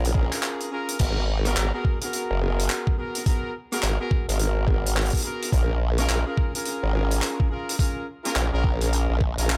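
Glitch hop with a funky, playful bounce, this excerpt from a longer piece rides a swung sixteenth-note feel in 4/4 over chords moving from A#m7 to G#m9 and back. A formant-sweep wobble bass sits up front, blending sawtooth and sine tones through a formant filter with overdrive and chorus for a saturated, sustained, wobbling low end. A raw garage drum kit recorded in a small room adds crash cymbal, handclaps, hi-hat and rim clicks with a gritty, mid-forward character and a rolled-off top. A compressed, thumpy sampled kick, re-recorded in a large room, comes in at 0.1 s and punches alongside the kit. Over this, a warm horn section fires tight, pop-style stabs with light vibrato, pumped by sidechaining and trailed by tape echo. A brief break arrives between 0.4 and 1.0 s, and the dry mix carries little reverb.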